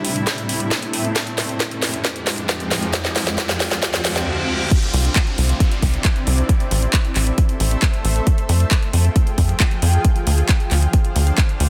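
A nasal, tube-saturated sawtooth sequencer bass arrives at 4.9 s, just after the drop lands at 4.7 s, pumping against a punchy electronic kick in this euphoric, soaring uplifting trance cut at 135 BPM in C major. Before that, a build-up carries a house kit drum fill with cracking snare, metallic hi-hats, handclaps and crash cymbal, while a riser, reverse cymbal and downlifter sit in the background. Throughout, a shimmering, detuned, granular pad with chorus sustains chords from Am through Fmadd9, Dm7 and Cadd9 in a dense, heavily limited mix.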